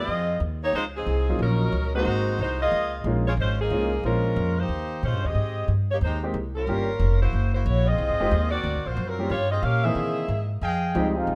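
A swinging 4/4 at 182 BPM drives this brassy, dramatic big band passage in F minor, cut from a longer piece, with a woody, dark pizzicato upright bass up front from the start. A smooth-topped saxophone section carries the melody with vibrato while a natural-sounding baby grand piano adds accompaniment from 1.3 s, all over a light reverb. Near the end, as the harmony lands on Fm9, a tight trumpet section punches in with stabs at 10.6 s, and a brilliant, close-miked trombone section picks up a second line at 11.0 s.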